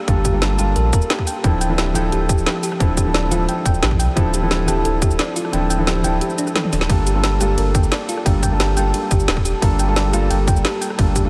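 Liquid drum and bass with a soulful, dreamy mood, this short cut from a longer piece moves in a straight four-beat feel and sits in a dreamy mix soaked in a huge ambient reverb. A soft, felt-muted upright piano carries the accompaniment up front, intimate and mellow with audible action noise and a touch of tape echo, while a round, tine-like thumb-piano-style synth pluck plays gentle arpeggios in the background through chorus and a diffuse ambient delay. Underneath, a deep, full sub bass with an octave layer, sine and triangle in tone, holds sustained notes up front. The drums pair a tight, overdriven electronic kick with an overdriven kit of woody snare, bright hi-hats, ride cymbal, rim click, cabasa and toms. The kick drops out at 5.5 seconds, a drum fill arrives at 6.6 seconds, and the harmony returns from Dm9 to Gm9 at 6.9 seconds.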